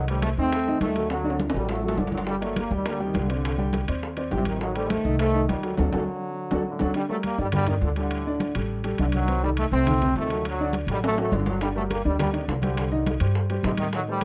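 A bright trombone section with light vibrato carries the melody up front in this fiery, danceable salsa fragment at 206 BPM in G harmonic minor, backed by a dark, mellow upright piano, a thumpy gut-string upright bass, ringing congas and metal-shell timbales, and tight high-tuned bongos that drop out from 6.9 to 11.6 seconds, all in a dry, close 1970s-style studio sound with light reverb and a band accent from 5.8 seconds.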